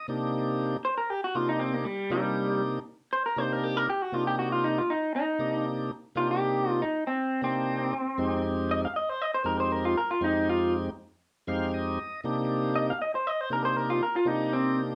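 A brooding, smoky minor-key blues at 118 BPM opens on a full, lightly overdriven tonewheel organ through a rotary speaker, joined at 0.8 seconds by a dark, slightly broken-up, lo-fi electric guitar through a small old amp that carries a fingered, compressed solo up front over a light sixteenth-note swing, moving from Cm7 to Fm7 and back, while the organ adds a short fill at 11.2 seconds, all set in a moderate club ambience in this cut from a longer piece.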